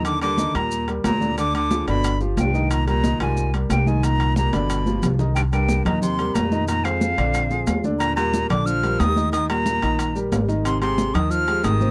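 A dry, close 1970s-style studio sound with light reverb frames this driving, fiery Afro-Cuban jazz excerpt in C minor at 181 BPM in straight 4/4. Up front, an airy, bright silver concert flute carries the melody with vibrato, a crisp attack and a slightly unsteady tone, beside a woody pizzicato upright bass, while a distant, roomy baritone saxophone adds a second line and an intimate concert grand piano with audible action noise and deep bass supplies the harmony, moving from Ebmaj7 through Cm11 and Fm7 to Abmaj7. High-tuned congas sit in the background alongside ringing metal-shell timbales and grainy, saturated maracas, and a drum fill from 4.5 to 5.4 seconds leads into the second section.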